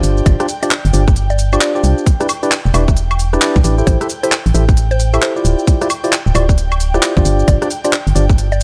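UK garage in a two-step, swung groove with a moody, late-night feel, where a tight, tape-warm electronic kick sits up front beside a hollow, dark, organ-like FM bass, crisp-hatted garage drums with handclaps, rim clicks, shaker and woodblock, clean tine electric piano stabs through tape echo, a woody, mellow synth pluck melody with chorus, phaser and dub echo entering at 0.3 seconds, and an airy, breathy pad of sustained chords pumping in the background over a G7sus4, Em7, Am7, Dm11 progression, all in a dry sound cut from a longer piece.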